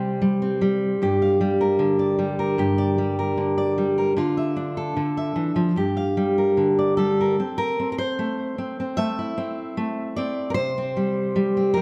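A fingerpicked steel-string acoustic guitar plays alone from the first moment, a dark-toned, up-front solo folk piece in G dorian at 76 BPM in a straight 4/4, wistful and reflective in mood. Its lines range from G2 to F5 over chords moving from C5 to Gm, Dmadd9 and Am, with a phrase that begins again at 7.4 seconds. A moderate recital hall reverb gives the guitar an auditorium-like space around it, and the passage is cut from a longer piece, ending at 11.8 seconds.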